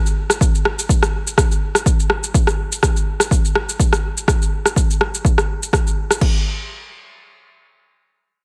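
Afro house with a driving, hypnotic pulse and a lightly swung sixteenth-note feel, cut from a longer piece. An up-front, overdriven deep house drum kit of crash cymbal, rim click and shaker starts almost at once, joined at 0.4 seconds by a punchy, layered electronic kick drum, both playing until 6.3 seconds. A digital ambience surrounds the parts, and the passage moves into a new section at 6.2 seconds.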